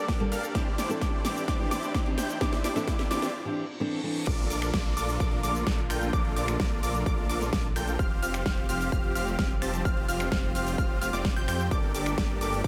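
This is festival progressive house in 4/4, uplifting and anthemic, taken from a longer piece. It opens on a build-up where supersaw chords carry a huge, bright riff, a lush, wave-folded unison pluck plays high arpeggios, and a rich string section holds smooth, vibrato-laden chords in the background, all of them pumping against the sidechain. The pluck and supersaws also trail dub echoes. A fingerpicked steel-string acoustic guitar adds a dark accompaniment with its own pumping and echo from 0.2 to 4.2 seconds, while a very quiet riser, reverse cymbal and downlifter thread through the transitions. A drum fill runs under the build-up and gives way to a short break with a reverse cymbal before the drop hits at 4.3 seconds, where a thick, chorused, detuned saw bass enters. Throughout, a punchy, up-front electronic kick and a big-room kit with a huge snare, metallic hats, cabasa, snaps, crash and ride drive the track, and the mix is set in light digital ambience.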